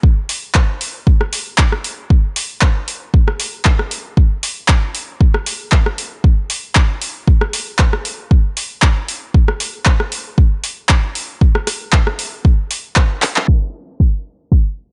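Moody and deep, this house groove at 116 BPM in 4/4 is cut from a longer piece and carries a gentle 54% swing on the sixteenths. An electronic kick drum anchors it from the very start, layered and produced, with a deep, tape-warm body sitting up front in the mix. A punchy analog drum machine joins at 0.3 seconds with handclaps, hi-hat and rim clicks, its overdrive giving the percussion a gritty, forward edge. The whole track sits in a digital ambience, low-pass filtered so the top end is rounded off and dark. Near the close, a drum fill and a band accent lead into a brief closing passage where a filter sweep takes over, the drum machine drops out at 13.5 seconds, and the kick carries on alone until 14.6 seconds.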